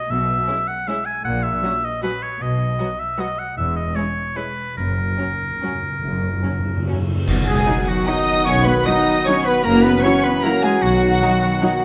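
This is a festive, sweeping orchestral ballroom waltz in B major, moving in 3/4 at a rubato 136 to 168 BPM, cut from a longer piece. A lush, distant violin section carries the melody with smooth vibrato, supported by a softer second violin line in the background, a rich viola section in the accompaniment, and cellos and double basses anchoring the bass, the basses close and expressive with portamento. A clear oboe weaves a second line from the very start, while timpani struck with hard mallets sound at the outset and return for a fill from 4.8 seconds, joined by dark cymbals, a cymbal swell and concert bass drum. At 7.3 seconds the full band lands an accent and the brass enters: a mellow French horn section and a bright, tight trombone section hold sustained chords, a mellow trumpet adds stabs, and a punchy, dark tuba reinforces the bass. A very quiet, hollow flute and a soft clarinet add second lines just after, as the harmony settles through F#7 back to B. 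The whole ensemble sits in a moderate recital hall reverb that gives it a gracious, spacious sheen.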